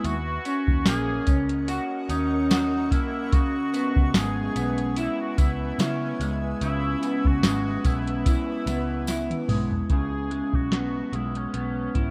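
A bright, twangy, slightly broken-up electric guitar through a small old amp leads the accompaniment up front in this wistful, hazy 73 BPM indie bedroom-pop excerpt, with a lo-fi warble and chorus, alongside a smooth-topped cor anglais melody with analog delay, a dark, round, foam-muted picked bass, a soft vintage rhythm box with a deep kick, tonal snare and metallic hats that plays a fill at 9.1 s, a jingly tambourine in the background until 9.3 s, and a shimmering, ethereal granular pad that sustains softly behind everything else until 9.9 s, all in a rough home-demo mix with light reverb.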